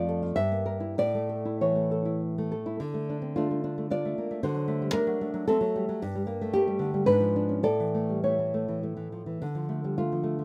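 This romantic solo classical guitar piece in D minor moves in 3/4 with a rubato feel, its tempo drifting between 95 and 117 BPM. The mood is intimate and wistful, carried entirely by a single nylon-string guitar that sits up front, its thumb-plucked tone warm and acoustic as it ranges from F2 to E5. A short opening phrase leans on a diminished color over G before settling onto A, and at 2.8 seconds a new section begins on D minor. From there the harmony passes through D7 and G minor, then a G#dim7 that resolves to A and finally back to D minor at 9.4 seconds. A light reverb gives the guitar a soft sense of space in this brief excerpt cut from a longer piece.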